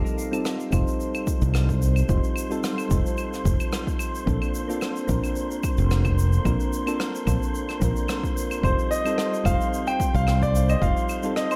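A short excerpt of relaxed sunset chillout opens on soft, mellow electric-piano-like synth keys, coloured by chorus and tape echo, with shaker, claves and rim click arriving almost at once in a brushed, roomy studio sound. The tempo sits at 110 BPM in 4/4 with a light swing on the sixteenths, in Bb major, as the harmony moves from F7 to Bbmaj7 and back to F7. A bright, punchy fingered electric bass sits up front, joined by a layered, overdriven electronic kick, while an airy, breathy wind-like tuned noise texture drifts high above with its own built-in reverb. At 8.6 seconds a clear, intimate concert grand piano takes the melody, its action noise audible and its long sustain carried on tape echo. The whole mix has an echo-heavy feel, set in a moderate echo chamber reverb.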